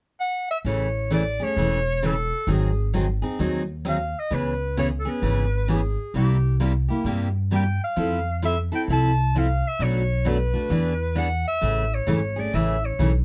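This short excerpt of acoustic string swing in the jazz manouche style opens with a bright clarinet carrying the melody from 0.2 seconds, its vibrato-laden, forceful tone sounding punchy yet distant and roomy. An upright bass joins at 0.6 seconds, plucked on gut strings with a woody, thumpy character sitting up front. Just after, a picked steel-string acoustic guitar fills in the accompaniment, full-bodied and fresh-stringed with the big voice of a jumbo body. The harmony moves from Amaj7 through G#7, C#m7 and C7 to Fmaj7, then Bm7 and E7 before settling back on Amaj7. The mood is swinging and charming, framed by light reverb in a dark, warm production that shaves off the highest sparkle.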